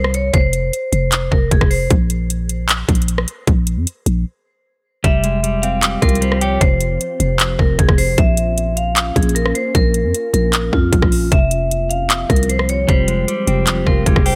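A dark, hard-mallet vibraphone rings out in filtered, metallic tones over a growling, buzzy 808-style bass and an up-front electronic trap kit of hard-clipped kicks, metallic hi-hats, handclaps and rim clicks, setting a melancholic, eerie trap groove at 153 BPM in half-time, in F harmonic minor. The vibraphone drops out at 1.9 seconds for a break carried by bass and drums, then returns at 5.0 seconds alongside brief touches of clean, scooped electric guitar as the chords move between Fmadd9 and Bbm. From 5.8 seconds a glassy, ethereal FM pad with chorus, phaser and its own reverb sustains quietly in the background of an otherwise dry mix.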